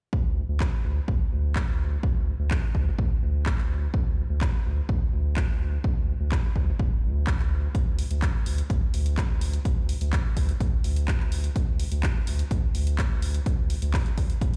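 Progressive house at 126 BPM in a straight 4/4, this short cut from a longer piece feels dreamy yet driving. A saturated sub bass ranging from D1 to D2 sits up front from 0.1 seconds, deep and thick with a sine-like core, a fast attack and sustained notes that pump under sidechain compression. An electronic kick drum enters alongside it, punchy and layered, with a tape-softened edge and studio reverb. At 0.6 seconds a house drum kit of handclaps and hi-hat joins further back in the mix, its hats carrying a mellow warmth under the same studio reverb. Digital ambience surrounds the parts, giving the impression of music played on a big sound system in a bare room, with a large, roomy reverb.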